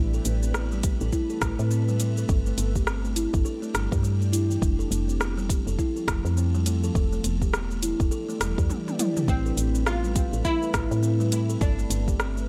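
An ethereal, airy pad drifting in the background with chorus, phaser and a gentle pumping pulse opens this mystical, meditative organic downtempo excerpt in A minor at 103 BPM, joined at once by a buzzing, hollow-bodied kalimba playing tape-echoed arpeggios and a round, woody FM bass sitting up front. A deep house kit of cabasa, dark hi-hats, rim clicks and toms swings lightly over the 16ths, and a deep electronic kick enters at 0.8 seconds to anchor the groove through the Amadd9, G5, F and Em7 changes. After a drum fill, a plectrum-plucked fretless oud with doubled strings slips in at 9.3 seconds for a short delayed melody, all set in a light digital ambience.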